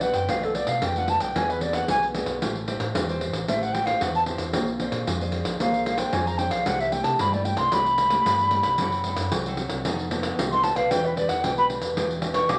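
Yearning yet lively, this 12.6-second fragment of samba and choro in E minor at 113 BPM features an airy, reedy wooden flute soloing up front with vibrato and tongued phrasing over a full-bodied, fingerpicked nylon-string guitar with audible finger squeak, a punchy fingered electric bass shaped by an envelope filter, and a jingly pandeiro played with soft hands, all set in a wet studio reverb with vinyl crackle beneath.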